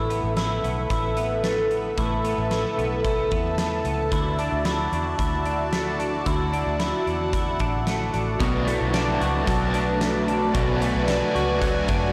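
A swirling, detuned analog pad sits up front with sustained chords, its phaser and chorus giving a full-bodied, evolving glow to this dreamy, blissful dream pop excerpt at 112 BPM in straight 4/4. Beside it, a dark, clean semi-hollow electric guitar plays fingered arpeggios through analog chorus and tape echo, while a foam-muted, round vintage electric bass with tube saturation anchors the low end. A huge arena drum kit with a punchy kick, fat snare, hi-hat and tambourine fills a big room. At 8.4 seconds the harmony shifts from Asus2 and Dadd9 to Bm7, and a raw, picked garage guitar enters with overdrive, tremolo and lush chorus, joined at 8.7 seconds by a very quiet, mellow tine electric piano heard through its built-in speakers. The whole recording is blown-out and overdriven, washed in a lush hall reverb.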